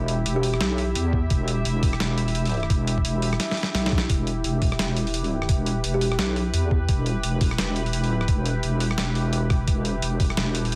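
Dark and spacious, this half-time drum and bass passage moves with a swung, unhurried feel under a light reverb. A moody ambient pad holds sustained chords throughout, its detuned sawtooth and sine layers given a mellow glow by chorus, built-in reverb and sidechain pumping. Up front, a deep wobble bass built from square and sine tones carries the low end with a fast attack and its own chorus. A sampler-style kit of hi-hat, rim click and medium-tuned snare, gritty and tape-warm, enters almost at once and is joined at 1.1 seconds by a thumpy, compressed electronic kick, both pitched down, with a drum fill at 3.4 seconds. In the background, a woody, boxy kalimba sounds two brief, soft plucked notes through delay, the second near 5.9 seconds.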